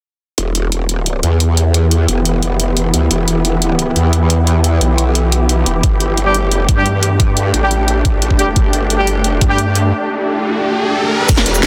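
Driving straight 4/4 drum and bass at 176 BPM opens this dark, aggressive technical cut, taken from a longer piece in E phrygian, with an up-front electronic kit bringing a cracking snare with soft clipping, bright hi-hats, shaker and crash cymbal from 0.4 seconds. A growling, wobbling growl bass enters alongside it, saturated and compressed with a formant filter and chorus, sitting up front in the low register, and shortly after a swarming, detuned drone of sustained chords breathes in with slow attack, granular texture, built-in reverb and sidechain pumping. The harmony rests on Em before shifting to Gsus2 at 5.8 seconds, where a knocking electronic kick joins the mix. Shortly after, a mellow brass ensemble adds tight, classical-style stabs with light vibrato and delay, and an electronic riser appears near the end before a crunchy breakbeat kit with a high-tuned, gritty snare and rolled-off top slips in at the very back. 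The dense, heavily limited master keeps the whole passage forceful under light reverb.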